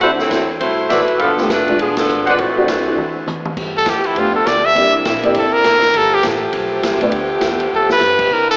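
Brassy and joyful, this big band swing excerpt moves at 202 BPM in G mixolydian. A smooth, vibrato-rich saxophone section carries the opening melody over baby grand piano accompaniment, a woody, growly upright bass and a punchy, swinging drum kit, while a very quiet trumpet section adds clear stabs and the band hits an accent at 1.9 seconds. After a drum fill, a brilliant, forceful trumpet solo with scooped notes and light vibrato takes the lead at 3.8 seconds over sustained chords from a bright saxophone section, all in a dreamy, AM-radio-tinged mix soaked in lush hall reverb, with a diffuse ambient delay trailing the lead horns.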